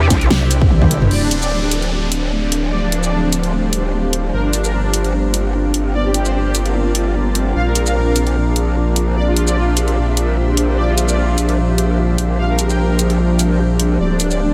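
A swung half-time 4/4 groove drives this chaotic, menacing heavy wobble dubstep excerpt, which opens on a drop where a punchy, layered electronic kick hits only until 0.9 s and a drum fill leads into the main section, while the up-front dubstep kit with its huge snare, crash cymbal, hi-hat, shaker and toms carries on; an aggressive, saturated growl bass wobbles through a formant filter, a smooth, detuned supersaw melody and a morphing, vintage wavetable pad with sidechain pumping float over the chords, a downlifter passes early on, and a blurred granular cloud pad enters at 2.5 s as a filter sweep on the ambient pad and a huge, dreamy reverb soak the mix.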